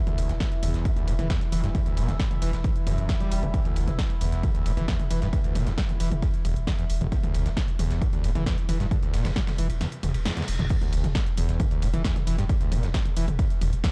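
A dark, warm production with light digital ambience frames this hypnotic, driving peak-time techno cut from a longer piece. A heavy, tape-warm electronic kick sits up front, joined by a techno kit of punchy snare, crash, hi-hat and toms with sidechain pumping on the toms, hats and cymbals. Beneath it, a gritty, overdriven sampler-style kit adds ride cymbal and snare in the background. A deep, thick saturated sub bass holds the low end with overdrive and a low-pass filter. Above it, a squelchy, screaming acid line snarls with resonant filter sweeps, distortion and lush chorus, while an evolving, warbling analog drone pumps underneath until 10.7 seconds. The kick drops out at 9.8 seconds, a reverse cymbal enters in the background at 10.1 seconds, and a band accent at 10.3 seconds leads into the drop at 10.7 seconds.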